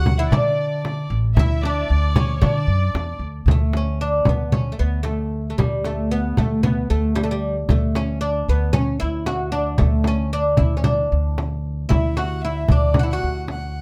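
This Arabic maqam ensemble piece, cut from a longer work, moves at a stately, festive 114 BPM in a straight 4/4, set in D maqam ajam. The fretless oud carries the melody up front, its plectrum-plucked double strings sounding bright and woody under a plate reverb. For the first 3.2 seconds, two bowed violin lines sit behind it: a distant, reedy studio section with a dark gut-string tone and light period-style vibrato, and a single warm, pure violin playing sul tasto with a soft attack and a floating, smooth top. That solo violin returns at 11.9 seconds near the close. Underneath, a pizzicato upright bass on steel strings stands forward with a warm, woody acoustic body, while a small frame drum played with hard hands sounds close and dry throughout. The whole ensemble sits in a light room reverb.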